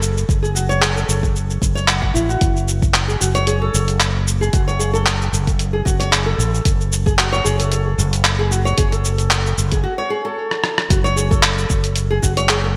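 A punchy, up-front fretless electric bass, thickened with a lush chorus, anchors this hypnotic, earthy organic downtempo excerpt. A bright fingerpicked nylon-string guitar plays classical-style arpeggios through a delay, over a gritty, compressed sampler-style kit of cabasa, handclaps, hi-hat and rim click with gated reverb, and a deep electronic kick. The sound is bright 1980s-style digital production in a lush hall reverb, with a break at 9.8 s and a drum fill at 10.5 s leading into a new section at 10.9 s.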